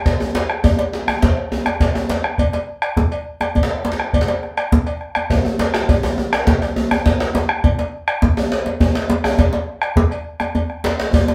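A festive, earthy West African drum ensemble starts together at 0.1 seconds in a straight 12/8 at 137 BPM: a round, up-front bombo anchors the groove beside a deep djembe with a small-room character, while a second djembe sounds hard-handed, with metal rattles and a large-room ambience. A metallic, band-limited cowbell with a vintage tone sits lower in the mix. The live-in-one-room performance carries a wet studio reverb, and this excerpt from a longer piece closes with a drum fill at 11.1 seconds.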